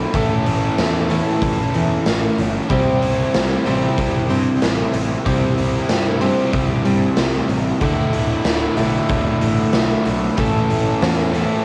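A biting, double-tracked overdriven electric guitar riff sits up front in this short cut from a longer quiet-loud alternative rock piece, alongside a raw garage drum kit, while a bright, plugged-in dreadnought acoustic guitar picks arpeggios further back. The mood is anthemic yet restless, moving at 94 BPM in a straight 4/4 through A, C and Dsus2 before returning to A at 10.4 seconds. Beneath the guitars, a fuzz-laden picked electric bass adds a warm, overdriven low end, heard both direct and through an amp. The drums are saturated and gritty, with a punchy kick, a medium-tuned snare and hi-hat, set in a bright, pumping stone room and coloured by cassette tape. The whole piece carries the feel of a home cassette recording, with light small-room reverb.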